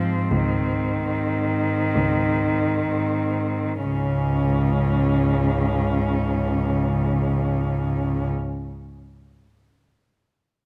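Classical and lyrical, this tender excerpt for four muted cellos moves in a rubato 4/4 at 30-40 BPM, slowing down over its first 3.9 seconds, with a veiled, dark melody on top, a close second line gliding in portamento, a soft-attacked accompaniment and a bass held up front, all bowed con sordino with vibrato over an Ab/Db chord and framed by a moderate concert hall reverb caught with close, detailed microphones.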